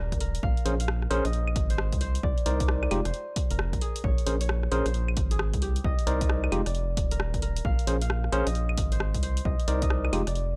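A rubbery, hollow square-wave bass sits up front in this short, bouncy and moody cut of two-step UK garage, its dark, wave-folded tone carrying a quick filter pluck and a sustained body. The groove moves at 133 BPM in 4/4 with a 63% swing on the 16th notes, driven by a dry, punchy analog kick and a drum machine playing claves, hi-hat and rim click. A barky, bright tine electric piano enters at 0.7 seconds with clean stabs through a combo amp and an analog delay, moving over a Bbm9, Cm9, F5 and Fm7 progression. Far back in the mix, a mellow, ringing concert harp carries the melody through a tape echo. The sound is a gritty hardware recording with very little reverb, and the passage is cut from a longer piece, ending at 10.6 seconds.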